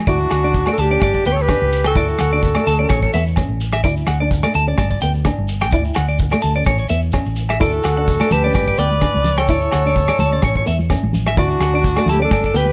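Danceable and carefree, this highlife guitar band excerpt moves at 128 BPM in 4/4 with a gentle swing on the sixteenths, cycling through D, G and A chords in D major. A punchy, forceful alto saxophone with jazz-style vibrato carries the melody up front, joined by a clear, distant trumpet on a second line, and the two horns drop out after 3.2 seconds before returning at 7.6 seconds. Beneath them, a clean, twangy electric guitar spins compressed, scooped arpeggios high above a dark, boxy fingerpicked ladder-braced acoustic guitar. A round, amped hollow-body bass sits up front alongside a tight-kicked soul drum kit with a rolled-off top, playing hi-hat, kick and rim click. Grainy shekere rattles in a live room while ringing agogo bells sit in the background, and bright, thin-skinned congas enter at 8.3 seconds. Light reverb surrounds the band, and the sound carries lossy compression artefacts.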